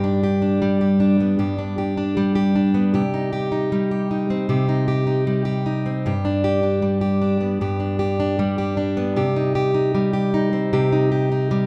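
Pop in C harmonic minor at 77 BPM, this reflective, tender fragment from a longer piece features a solo fingerpicked plugged-in steel-string acoustic guitar, dark in tone and up front, alternating between G and Cm chords over about 11.7 seconds within the moderate reverb of a recital hall.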